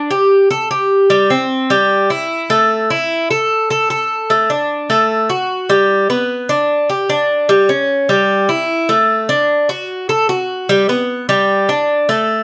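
A straight 4/4 pulse at 150 BPM drives this danceable Latin clip in G major, cut from a longer piece. A Cuban tres plays alone and up front for the full 12.4 seconds, ranging from G3 to A4, its picked, paired strings giving a metallic ring with some octave doubling over a warm body. A moderate studio reverb surrounds the instrument.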